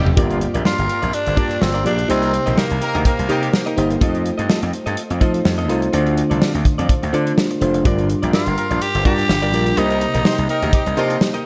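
Dramatic and moody, this 1980s-style pop cut opens on a drum fill from a tight, up-front studio kit, with a punchy, overdriven slap bass and a glassy, bell-like FM electric piano carrying the lightly swung Gm7–Cm7–F7–Dm7 progression. A raspy tenor saxophone takes the lead from 0.7 s, returning at 8.3 s alongside distant, roomy horn stabs with octave doubling. Meanwhile, a bright, clean, direct-recorded electric guitar riff sits in the background under shimmer reverb and delay, all within a lush hall.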